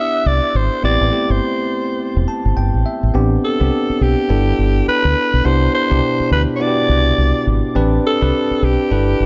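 Bouncy and confident, this short new jack swing excerpt at 104 BPM sets a breathy, raspy alto saxophone melody with tape echo and scooped, vibrato-laden notes over a bright, bell-like tine electric piano that plays a fill from 2.0 to 3.1 seconds, while a round, punchy dub bass enters at 0.3 seconds beneath chords moving from Cmaj7 through Am11, G69 and Cmaj9 in a dark, softly reverberant small-room mix.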